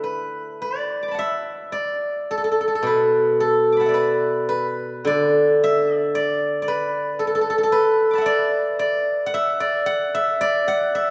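A solo steel-string zither, bright and silvery, rings out up front from the start of this short cut from a longer traditional Chinese piece, played with fingerpicks across a range from B2 to D6. The mood is pastoral and serene, moving freely in rubato around a slow 55 BPM in D gong mode. A wet concert-hall reverb with a long 2.1-second tail surrounds the acoustic instrument through to 11.1 seconds.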